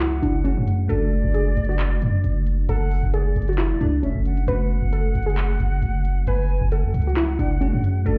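This short, dark and menacing trap excerpt in F# minor opens with every part sounding at once: a hard-hitting 808-style bass, a trap drum kit, a warbly dusty pluck, a bell-like electric piano and a silver concert flute. The tempo sits at 134 BPM in 4/4 with a half-time feel. The 808 is the loudest and most up-front element, a punchy sine tone with a noise layer, a fast attack and a decaying tail, while the electronic kit adds crisp hi-hats and handclaps further back. The pluck carries the melody with a lo-fi, vintage character, warbling and detuned, with chorus, a sub octave and a filter sweep, and the tine electric piano accompanies it with clean, bright tones that seem to come through built-in speakers. Above them, the airy flute plays a quieter second line with vibrato, tongued notes, an unsteady quality and delay. The harmony moves from F#madd9 to D/F# at 0.9 seconds and returns to F#madd9 at 4.5 seconds, and the whole mix sounds muffled, as if heard through a wall into a club.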